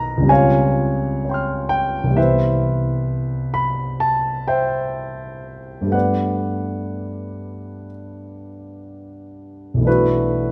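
Mysterious and wistful, this short excerpt from a longer impressionist classical work features a solo concert grand piano, played with rubato around 60-65 BPM in 4/4. The piano sounds up front, with a deep bass and a warm tone, spanning B1 to E#6 as lush harmonies move from C#maj7#11 through Cmaj7 and Gmaj9 before settling on Bm7 at 9.9 seconds. A moderate scoring-stage reverb lends the instrument a gentle sense of space.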